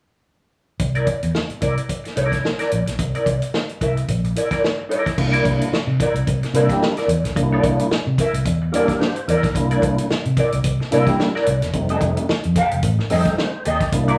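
Strutting and energetic, this funk excerpt at 110 BPM swings its sixteenths in C mixolydian, moving from C9 to F9, as an up-front, clean semi-hollow electric guitar with wah and spring reverb comps over a dark, round, punchy muted fingered bass and a dry, warm soul drum kit with a tight kick and medium-tuned snare, before a fat tonewheel organ with key click and slow rotary speaker enters at 5.2 s with stabs and adds fills from 8.5 s, while a breathy, scooped trombone slips in brief soft-attack notes from 6.7 s, all in a live-room studio ambience.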